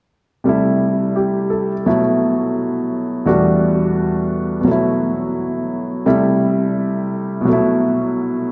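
A concert grand piano opens this late-night, moody solo jazz excerpt at 86 BPM with a swung 4/4 feel, its intimate, up-front tone carrying deep bass and audible action noise as it moves through C6, B7sus4 and Em11 chords from 0.5 s, all bathed in the long, wet reverb of a cathedral-like hall.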